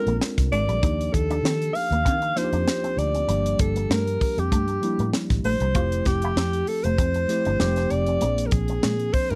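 A mellow alto saxophone leads up front with subtone, vibrato and scooped notes, its slapback echo giving the jazz-style melody a smooth lift over this breezy, upbeat slice of polished 1980s jazz-funk pop in F major at 98 BPM with a light 16th-note swing. A worn, slightly out-of-tune tine electric piano with subtle chorus comps through chords such as Bb9, Ebmaj9, Gm7 and Fmaj9, while a dark, picked envelope-filter guitar riff sits in the background. Underneath, a round, foam-muted fingered bass and a tight funk kit with a high-tuned snare drive the groove in a dry, close 1970s-style studio sound.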